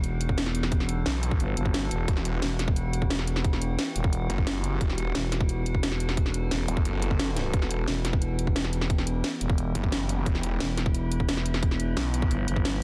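A dense, heavily limited modern mix with light digital ambience carries this dark, futuristic cut of technical drum and bass at 176 BPM in E minor, built from an overdriven, up-front drum kit of cracking snare and bright hats, a tight electronic kick entering at 0.3 s, a thick, growling FM bass, a snarling, detuned sawtooth bass with a resonant moving notch, distortion and sidechain pumping arriving at 1.1 s, and an eerie, warbling metallic drone that sustains an Emadd9 chord through chorus, phaser and its own reverb.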